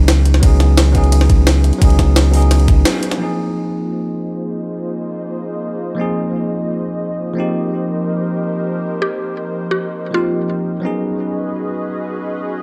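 A bell-like tine electric piano, filtered and touched with delay, runs through this dreamy, melancholic liquid drum and bass excerpt in Bb minor at 173 BPM, opening on a drop where a deep sine sub bass with octave, a thumpy pitched-up electronic kick and a gritty jungle sampler-style kit with a high-tuned snare, hi-hat and ride drive the music until a band accent at 2.9 seconds; at 3.2 seconds an airy, breathy, detuned pad with chorus and sidechain pumping takes over beneath a filter sweep, while a woody, round FM pluck adds a brief melody at 9.0 seconds, all set in light digital reverb within a dark, warm production over suspended ninth chords.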